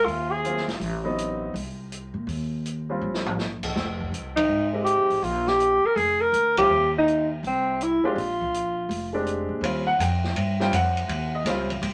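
A brief pickup of mellow, subtone alto saxophone opens this playful small-group swing fragment at a brisk 163 BPM in Eb mixolydian, with woody, thumpy pizzicato upright bass, an open kit of dark cymbals and boomy kick, and a warm, up-front baby grand comping through chords like Ab13, Adim7 and Fm7. After a drum fill around 3.0 seconds, the saxophone returns at 4.4 seconds with punchy, scooped notes that sound distant and roomy yet sit at the front of the mix, riding over a band accent at 6.5 seconds and continuing until 9.2 seconds. The rhythm section then carries on into a new section over Eb13, all bathed in a short, wet studio reverb.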